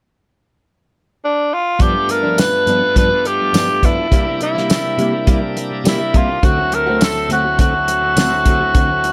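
A raspy, breathy tenor saxophone opens the melody at 1.2 seconds, and at 1.8 seconds a damped, dry 70s drum kit with a fat snare, tight kick and tambourine, a shouting tonewheel organ through overdrive and a slow rotary speaker, and clean, compressed direct-recorded electric guitar stabs with chorus and delay join over G7, C7 and D7 in this swaggering, soulful straight-eighth soul blues excerpt in G major at 104 BPM, set in light reverb with the saxophone and drums up front.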